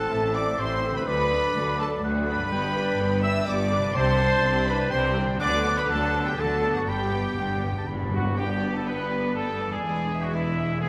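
Soaring and triumphant, this cinematic excerpt in G major moves at 124 BPM in 3/4, with a clear, focused violin section carrying the melody over rich violins, a very quiet airy flute ensemble and a punchy solo oboe (which drops out at 8.4 s) as second lines, distant violas in accompaniment, mellow French horns and very quiet trombones holding chords, a ringing, thumb-plucked harp playing arpeggios, loose vintage-toned trumpet stabs, lush cellos and double basses on the bass, and a timpani fill from 6.9 s, all bathed in a wet scoring-stage reverb.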